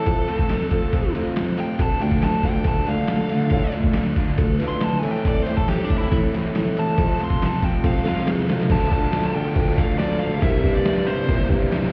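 A straight 4/4 pulse comes from a trip hop sampler-style drum kit, pitched down, compressed and tape-warm, with a thumpy kick, a medium-tuned snare, crash and ride cymbals, sitting up front as though re-recorded in a small room. This bittersweet, moody indie rock excerpt opens with a nasal lead guitar, its wah parked and its tone dark and overdriven, taking a picked solo from the start until 8.7 seconds, bathed in plate reverb and tape echo. Underneath, a crunchy overdriven guitar plays a riff colored by harmonic tremolo, while a dark, close-miked bassoon carries the bass line in a classical style with light vibrato. A second, biting overdriven guitar joins at 1.8 seconds with a riff under subtle chorus, set in the background. A drum fill leads into a new section at 8.7 seconds, where the chords move from D minor to C7, and the whole mix sounds muffled, as if heard through a wall with a stone room's reverb around it.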